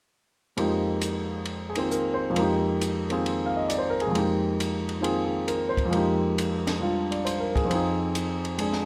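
Close, detailed microphones and light reverb give this short cut from a longer modal jazz piece an intimate, up-front sound, with the grand piano's action noise audible and its deep bass sounding natural. At 135 BPM in 4/4 with a swung eighth-note feel in F dorian, the piano comps from F2 to F5 over an Fm11 chord that moves to Ab/F at 7.7 seconds, creating an intense, searching mood. Sitting lower in the mix, a compact cocktail drum kit of hi-hat, kick, ride cymbal and snare plays from 0.6 to 8.9 seconds with dark, smooth cymbals, a high-tuned snare, a punchy kick and a rolled-off top.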